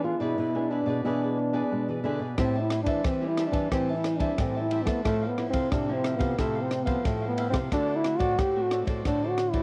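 Nostalgic yet lively, this excerpt from a longer samba and choro piece features a mellow, forceful trombone soloing up front in jazz style, with light vibrato and a smooth top over a crisp, picked cavaquinho and two nylon-string guitars, one playing accompaniment and the other the bass. One guitar is thumb-plucked and classical, while the other is fingerpicked, small and dark in the background, and a compact cocktail drum kit with a punchy kick, dark cymbals and rim clicks enters at 2.4 seconds. The home cassette recording has a light studio reverb, and the trombone, cavaquinho, accompanying guitar and drums carry a cassette-tape colour.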